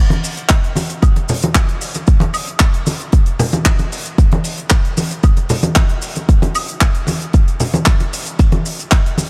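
Sensual and cosmic, this nu-disco excerpt moves at 114 BPM in a straight 4/4 groove. A damped 70s drum kit with handclaps, hi-hat, ride cymbal, shaker and woodblock plays throughout, dry and dark-cymballed with a rolled-off top, beside bright, low-tuned congas that sit up front with a vintage, band-limited character. A punchy, layered electronic kick enters at 0.5 seconds and stays prominent in the mix, all set in a light studio reverb.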